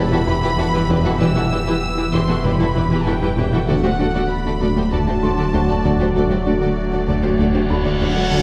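Futuristic and relentless, this hybrid orchestral and electronic film-score fragment sets lush, distant violins carrying the melody over a close studio violin second line, intense violas, focused cellos, double basses, a saturated sub bass and a roomy tuba, while a moody, evolving ambient pad and mellow French horns sustain Em and D chords, a round, tine-like synth pluck arpeggiates, a muted felt piano adds faint texture, and an electronic reverse cymbal enters at 7.0 seconds, all set back in a reverberant scoring-stage space.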